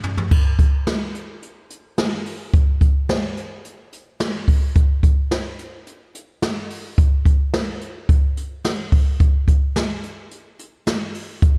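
A brief drum fill opens this nocturnal, melancholic pop excerpt at 108 BPM in a straight 4/4, where a jazz brush drum kit plays alone throughout, with dark cymbals, hi-hat, a medium-tuned snare, toms and a boomy kick captured up front in a roomy studio sound with little reverb.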